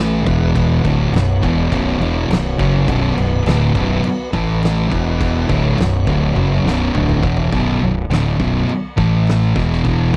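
Stoner and doom metal at 103 BPM in B minor, brooding and ominous, where two thick fuzz guitars, one dark and set back and the other warm and up front, pick a heavy riff over growly overdriven fingered bass and an oversized low-tuned drum kit with a fat snare, punchy kick and dark cymbals entering at 0.3 seconds, while a piping tonewheel organ with slow rotary speaker holds background chords until a drum fill at 6.4 seconds leads into a new section at 7.5 seconds, all in a dry, close 1970s-style studio sound.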